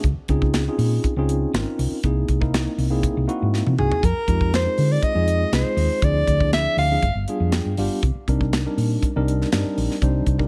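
A straight 4/4 groove at 120 BPM drives this slick, intense electric jazz fusion in C minor, with a tight, dry funk drum kit (tight kick, medium-tuned snare, hi-hat and toms) and a dark, round hollow-body short-scale bass holding the low end under a clean tine electric piano heard through its built-in speakers. A brief drum fill at 3.5 seconds ushers in a close-miked, warm soprano saxophone solo in jazz style, and the electric piano adds a fill of its own at 7.3 seconds as the changes move from Dbmaj9 through altered dominants to a closing Cm7. Light reverb and small room ambience frame this polished, up-front sound, cut from a longer piece.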